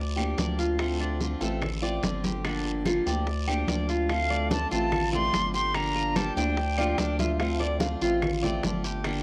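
Latin Cuban son and guajira at 145 BPM in D minor, danceable and sultry, in which a metallic, double-strung Cuban tres plays arpeggios with plate reverb and a cassette-tape tint over a round, deep, nasal analog bass up front, a bright parlour steel-string acoustic guitar, background bongos and congas, distant woody claves and a raspy guiro, before an airy silver concert flute with vibrato takes the melody at 4.1 seconds and a thumb-plucked nylon-string guitar adds a second line from 6.8 seconds in this short home-cassette excerpt.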